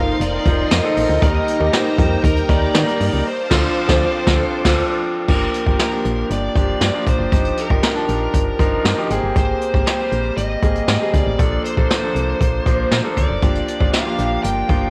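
A lush hall reverb and the soft haze of a home cassette recording frame this nostalgic, romantic slice of 1980s-style pop at 118 BPM in 4/4, where a dark, overdriven lead guitar sings the melody over a brilliant, up-front concert grand piano and a punchy, round FM bass. Brushed drums with a boomy kick and dark cymbals sit close and mellow throughout, while a shimmering string machine, a very quiet detuned sawtooth polysynth stabbing funky chords, and a faint clean direct guitar riff colour the opening before the band hits an accent from 3.3 to 5.3 seconds. The synth drops away at 4.8 seconds and the strings follow at 5.3 seconds, after which the harmony drifts through rich major-ninth and seventh chords, with the clean guitar riff returning at 13.4 seconds as the excerpt ends.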